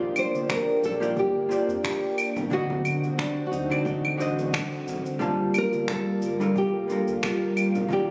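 A relaxed, sunny sunset chillout groove moves at 89 BPM in 4/4 with a gentle 16th-note swing, as up-front electronic claves, cabasa and finger snaps, layered and overdriven, enter at 0.2 s. A deep, overdriven electronic kick sits in the background from 0.5 s, while ringing acoustic congas and bongos, played with soft hands, sound distant as if in a large room. Carrying the melody is a full-bodied, fingerpicked nylon-string guitar placed up front, its finger squeaks audible through tape echo and shimmer reverb. Beneath it, a dark, clean hollow-body jazz guitar picks the accompaniment with delay, a lush, warbling unison pad of detuned sawtooth and square waves holds slow-attack chords through chorus, and a round sine sub bass stays mellow in the background. The harmony drifts from Bb69 to D7b9 and then Gm7 in this brief cut from a longer piece, heard through a plate reverb with a phone-in-the-room character that rolls off everything above 8.0 kHz.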